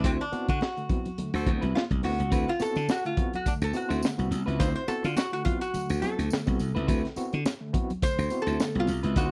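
Funk at 105 BPM in D mixolydian with a gritty, energetic 16th-note swing, led by a metallic, nasal resonator slide guitar played with a steel bar over a clean electric guitar, overdriven electric piano stabs with fast tremolo, growly up-front slap bass, a saturated breakbeat kit with a high-tuned snare, soft high-tuned congas, a brief tight horn line at 1.3 seconds and a jingly tambourine from 2.3 seconds, all in a dry, close 1970s-style small-room sound.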